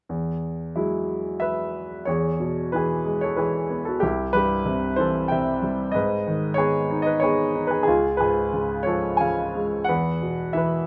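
In a rubato 3/4 around 92 BPM, this brief, relaxed excerpt of lyrical classical solo piano in E major features a clear, up-front grand piano spanning C2 to G#5 in light reverb, opening on Eadd9 and moving through E, C, G#m and C# before settling on Esus2 near 9.9 seconds.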